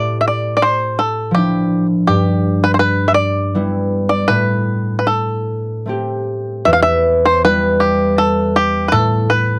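A twangy, percussive bluegrass banjo played with fingerpicks carries the melody of this haunting, longing Celtic slow air in A minor, drifting in a rubato 3/4 at about 74-84 BPM over a ringing, warm concert harp accompaniment, both placed up front in a dry, close 1970s-style studio sound in this excerpt from a longer piece.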